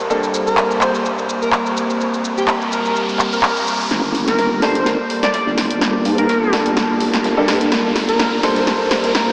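A punchy, layered big-room dance kit sits up front in this aggressive, swaggering bass house excerpt, with handclaps, hi-hat, shaker and snare driving a lightly swung groove. Beneath it, a deep, moody pad built from detuned sawtooth and sine layers holds sustained chords, coloured by chorus and its own reverb, while a very quiet, clear grand piano adds short, vintage-toned stabs. An airy, dreamy lead carries the melody with vibrato, chorus and analog delay, its detuned unison tone bright over a noise layer. A background riser comes in at 2.1 s. At 3.9 s the build-up begins: a nasal, resonant vowel-sweep wobble bass arrives with overdrive and chorus, a very quiet brushed jazz kit joins from a small room, a drum fill runs, and a filter sweep moves across the piano. The whole mix is soaked in a huge, wet reverb yet keeps a small-speaker character.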